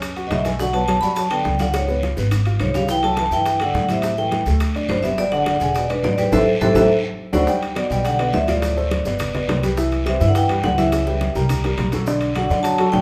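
A bright, close-miked vibraphone carries the melody from 0.3 seconds, its medium hard mallets giving a metallic, ringing tone with the motor off, dry and up front. This is a lively, sunny stretch of Afro-Cuban jazz cut from a longer piece, moving at a brisk 209 BPM in straight 4/4 and centred on G major with colourful jazz harmony. A breathy, whispered trombone plays a soft-attack second line, sounding distant and intimate, while a dark baby grand piano supplies short-sustained accompaniment and a woody, growly pizzicato upright bass sits up front. The percussion bed mixes ringing metal-shell timbales, thick-skinned congas and tight, high-tuned bongos in the background, raspy band-limited guiro and grainy, far-off maracas. Drum fills punctuate the phrases, a band accent hits at 6.3 seconds before a new section opens at 7.5 seconds, and a large, wet studio reverb adds space.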